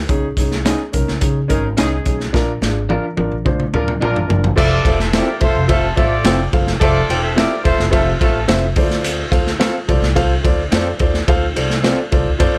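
A woody, growly upright bass opens this joyful, uplifting uptempo 1960s-style soul cut at 107 BPM, joined at once by a dark, mellow grand piano with audible action noise and a crunchy, saturated breakbeat kit with a punchy kick and pumping small-room sound, while a slightly broken-up electric guitar with tremolo adds background stabs, a tight, vintage horn section with light vibrato carries a second line from 1.5 to 8.4 s, and a drum fill leads into F major at 4.6 s, all in a dry, close-up sound.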